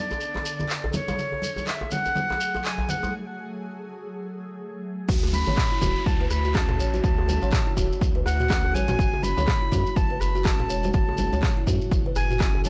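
A breathy jazz flute with vibrato and tape echo carries the melody through this earthy, spiritual afro house excerpt at 123 BPM in F# minor, over an ethereal, chorused pad with phaser, ringing congas, a cracking djembe in the background, grainy shekere and an afro-pop drum kit with handclaps, rim clicks and toms, until the drop at 5.1 seconds brings in a punchy, overdriven electronic kick up front, a round, deep analog bass and a woody, plucked kalimba, both pumping, along with a background downlifter, in a dry, gritty hardware recording.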